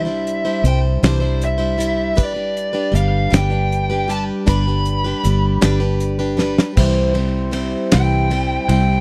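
A slow, rolling 6/8 lilt carries this nostalgic, open-road folk rock and heartland rock fragment, where a dark, smooth overdriven lead guitar sings the melody through tape echo over a boxy, picked plugged-in swing-style acoustic guitar with audible finger squeak, a round, foam-muted fingered electric bass and a damped 70s drum kit with a fat snare and dark cymbals that enters at 0.3 seconds and plays a fill just before the closing section at 6.8 seconds, while a mellow, flute-like tonewheel organ with key click and slow rotary speaker sits in the background from 2.2 seconds, all captured in a dry, close 1970s-style studio sound.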